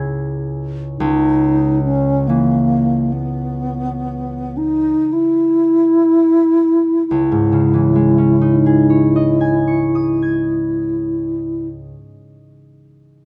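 A dark, warm recording with a moderate studio reverb frames this hazy, wistful fragment of an impressionist classical duo, cut from a longer piece and moving in a rubato 6/8 that slows down through its first 7.1 seconds. A concert harp opens at 0.0 seconds with bright, ringing fingerpicked chords spanning low to high, and at 1.0 second a pure, hollow alto flute enters up front with the melody, its soft attack and gentle vibrato carrying a faintly distant quality. The music shifts into a new section at 7.1 seconds, the flute lingering in its low, mellow register above the harp's chiming accompaniment.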